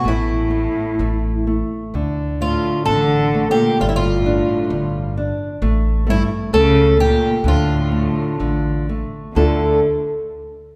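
A mournful, passionate fado-style ballad in D harmonic minor at 65 BPM in a rubato 2/4, this short cut from a longer piece sets a shimmering, octave-doubled fingerpicked twelve-string guitar up front carrying the melody over a smooth, nasal bowed cello second line with vibrato, a small fingerpicked nylon-string guitar accompaniment and a woody pizzicato upright bass entering at 0.1 seconds, all bathed in the wet reverb of a recital hall as the chords move from A5 through Gsus2 and Dm to a closing Dmadd9 at 9.4 seconds.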